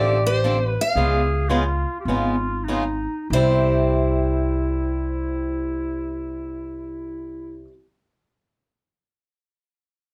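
Swung eighths in 4/4 ease back over the first 3.3 seconds of this playful jazz manouche excerpt, where a picked steel-string acoustic guitar carries a bright, fresh-stringed melody bathed in plate reverb, a raspy, growling clarinet with scooped notes and light vibrato adds an up-front second line, a boxy swing-style acoustic guitar supplies picked accompaniment, and a woody, thumpy pizzicato upright bass anchors the bottom as the harmony moves from Dm7 through Db9 to C at 3.3 seconds, inside a moderate club ambience.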